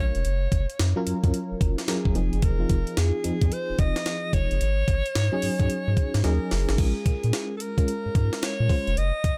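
A swung sixteenth-note groove at 110 BPM in 4/4 drives this confident, slick new jack swing excerpt in Bb minor, built on a gritty, pitched-up breakbeat kit with a thumpy kick, high-tuned snare, hi-hat and crash, alongside a round, deep analog bass sitting up front. A mellow FM electric piano with tremolo carries the chords from Gbmaj7 through Fm7 and Ab7sus4, while a breathy, close-miked alto saxophone sings a jazz-style solo line with vibrato, subtone and tape echo. A drum fill at 6.2 seconds leads into a new section on Bbm7 at 6.8 seconds, all set in a digital ambience.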